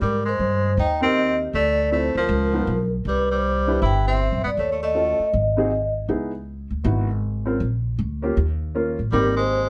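A woody, thumpy pizzicato upright bass anchors this short swinging small-group jazz cut in Ab major at 158 BPM, staying present from start to finish while a ringing vibraphone with soft mallets and fast motor vibrato carries the melody over a clear, scooped tenor saxophone second line; the saxophone drops out around 5.3 seconds and the vibraphone around 5.9 seconds, and both return at 9.1 seconds. An intimate baby grand piano with audible action noise and short sustain joins at 1.0 seconds to comp through chords that move from Abmaj7 through Cmaj9 and Ab7 back to Abmaj7. The mood is warm and swinging, set in light reverb with some lossy compression artefacts.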